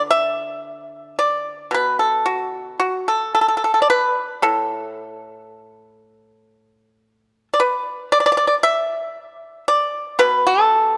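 A solo pipa, plucked with fingerpicks and placed up front with a dry, percussive bite, carries this serene, pastoral 11-second fragment of Chinese traditional music, drifting in free rubato around 57 BPM in 4/4 within a D gong mode, surrounded by a moderate concert hall ambience.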